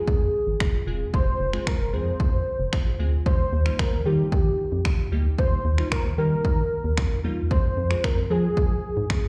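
A velvety, detuned sawtooth synth lead with portamento sings the up-front melody over a confident, driving 113 BPM dance-pop groove in F minor, moving from Fm to Eb at 3.3 seconds and back to Fm at 7.5 seconds, joined by glassy, detuned digital keys with a filter sweep and sidechain pumping, a hollow, dark organ-like FM bass that also pumps, and a punchy analog drum machine kick with finger snaps whose hi-hats drop out from 5.4 to 7.5 seconds, all heard as a short cut from a live gig through the venue's PA with recital hall reverb.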